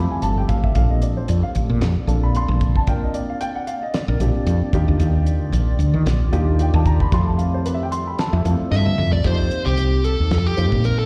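A lightly swung sixteenth-note groove at 113 BPM in 4/4 drives this soaring, funky electric jazz fusion excerpt in Bb major. A damped 70s drum kit sits dry and rolled-off, with a fat snare and tight kick across hi-hat and toms. Up front, a woody fretless bass gives a round, hollow-bodied low end. A vintage baby grand piano supplies mellow, intimate accompaniment with audible action noise and a slapback echo, while a granular cloud pad drifts blurred and evolving in the background, through chords moving from Fmaj9 to Bbmaj9, Ebmaj9 and back. A drum fill at 8.7 seconds arrives together with a dark, overdriven lead guitar, picked with slapback echo and analog delay, as the pad drops away at 9.2 seconds and the harmony settles on F9sus4. The whole band is heard as a live gig through the venue's PA, wrapped in small-room ambience and recital-hall reverb.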